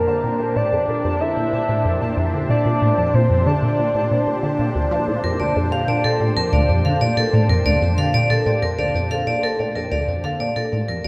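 A straight 4/4 pulse at 93 BPM drives this cosmic, luminous stretch of ambient sequencer-driven space music in Bb major, where a squelchy, resonant blip pluck riff with phaser, ensemble chorus and tape echo sits up front over a lush, thick unison pad holding a Bbmaj7 chord, a mellow pulsing gated texture hovers in the background, a round, dark octave-layered synth lead with vibrato sings the melody until 4.8 s, and a metallic, ringing vibraphone struck with hard mallets takes up arpeggios through tape echo from 5.2 s, all within a moderate plate reverb and an echo-heavy mix that fades out from 8.5 s.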